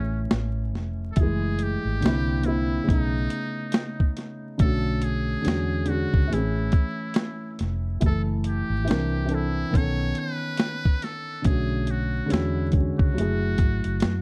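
Hazy and melancholic, this lo-fi hip hop excerpt moves at a relaxed 70 BPM in 4/4 with a gentle 16th-note swing, its dark, warm production dusted with vinyl crackle and light reverb. A felt-muted upright piano sits up front with a soft, intimate tone, its thick felt and audible action noise colored by cassette tape, a low-pass filter and plate reverb as it carries the harmony through jazzy chords like Amaj7, F#m9, C9 and E13. Beneath it, a foam-muted fingered electric bass gives a round, amped low end. The boom bap drum kit enters at 0.3 seconds, compressed and pitched down with 12-bit sampler grit, a thumpy kick and a high-tuned snare alongside the hi-hat. Over it all, a trumpet with a metal mute plays a buzzy, thin jazz melody with light vibrato, softened by a low-pass filter yet still present in the mix.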